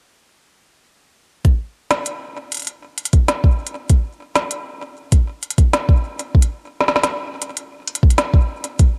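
At 1.4 seconds, a soft electronic kick drum and an organic-sounding electronic kit enter together, marking out a steady, straight 4/4 groove in this short, wistful IDM excerpt. The kick sits as the loudest part. The kit's woody snare and crisp hi-hats ride a little lower, with a digital delay that adds a glitchy shimmer. Both parts sound produced and electronic, yet re-recorded in a small room and placed up front, which gives them a close, tactile presence. A light reverb rounds out the space, and the passage holds as a single section until it is cut off at about 9.0 seconds.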